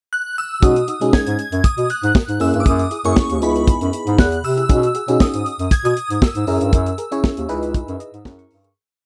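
A mellow bass clarinet anchors this short, smooth and feel-good early-eighties boogie funk piece at 118 BPM in B major, playing a fat, syncopated boogie bass line with chromatic approach notes, light vibrato and scooped notes. A shimmering, dreamy FM bell with an ensemble chorus opens the pickup alone at 0.1 seconds with a bright, motif-based melody, before a tight, dark funk drum kit enters at 0.6 seconds with a four-on-the-floor boogie beat, alongside a glassy, warbling FM electric piano playing syncopated rootless chords through chorus. The dry, close, 1970s-style studio sound fades out from 6.7 seconds as the electric piano adds a short fill to close.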